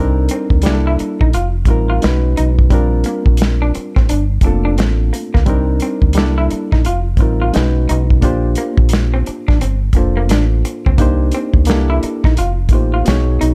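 A reedy, worn electric piano, slightly out of tune and washed in plate reverb, opens this late-night, introspective neo-soul and R&B excerpt alongside a dark, round fingered bass sitting up front. A moment later, at 0.3 seconds, a lo-fi, slightly broken-up picked guitar enters as a second line with its own plate reverb, and a small-room soul kit joins with a punchy kick, a medium-tuned snare and hi-hat. The groove moves at an unhurried 87 BPM in 4/4 with a lazy sixteenth-note swing, cycling through lush chords like Cm9, C13, F9sus4 and Gm11 in C dorian, and the overall sound stays close and dry.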